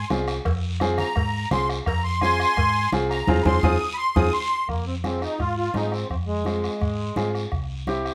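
Cumbia in F minor at 170 BPM, this fiery, driving excerpt puts a reedy, shimmering musette accordion up front on the melody over a clear, woody upright piano, a round, punchy hollow-body electric bass, a soft-beater bombo, bright damped congas and a raspy, distant guiro, while very quiet ringing timbales and cowbell drop out at 4.2 seconds, midway through a band accent and drum fill, all in light reverb as the harmony moves from Fm to C.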